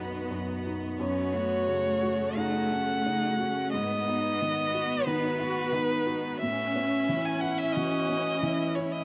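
A rubato 4/4 pulse around 89 BPM carries this melancholic, fragile neoclassical fragment in F# dorian, where a clear, smooth violin with vibrato sings the melody up front over a dark, expressive cello second line with portamento, a felt-muted upright piano whose mellow, intimate tone lets its action noise come through, a rich but distant viola, and a very quiet organ-like pad with ensemble chorus and tremolo, together moving through B, F#m, G#m7 and Aadd9 in a dry room.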